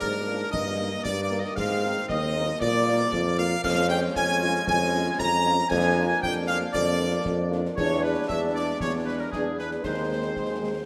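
Proud and festive, this excerpt from a longer military-style wind band march in 2/4 puts a bright trumpet section on the melody over a clear woodwind section's second line, while a soft-attacked, distant trombone section holds warm sustained chords, a mellow French horn section accompanies in the background from 0.3 s, a roomy tuba sits up front on the bass, very quiet concert snare, bass drum and dark clash cymbals mark the march, and a very quiet solo euphonium slips in briefly at 10.4 s, the whole band set in a lush scoring-stage reverb.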